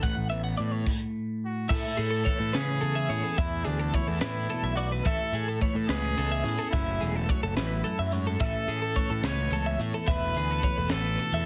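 In a straight 6/8 at 72 BPM counted in dotted quarters, this bright, intricate math rock and midwest emo fragment, cut from a longer piece in A major, moves through Asus2, Amaj7, E7sus4, F#m7 and A. A crisp fusion drum kit sits up front with a high-tuned snare, punchy kick, hi-hat and crash cymbal, its airy, polished studio-room sound stopping at 11.3 seconds. A fuzz-overdriven picked electric bass, round and also up front, anchors the low end. Two clean, compressed twelve-string electric guitars fill the middle: a warm one plays accompaniment, while a twangy one spins arpeggios high above it through a tremolo effect. At 1.5 seconds a clear trumpet enters with the melody, carrying light vibrato and a distant, roomy, pop-style solo tone. The mix has light reverb and a heavily compressed, radio-like character.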